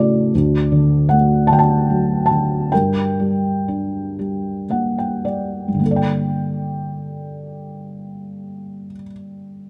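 Closely miked and detailed, with a light reverb, this short excerpt from a longer classical piece puts a felt-muted upright piano up front, its thick felt giving a soft, dark tone and its action noise audible. Alone throughout, the piano plays a lyrical, melancholic line in G harmonic minor and 6/8, moving with rubato at a slow 34-53 BPM and reaching from D2 to A5. The phrasing slows from 0.3 s as the harmony moves from D to G minor, a fill arrives at 4.2 s, and a reflective Gmadd9 chord opens a new section at 5.8 s.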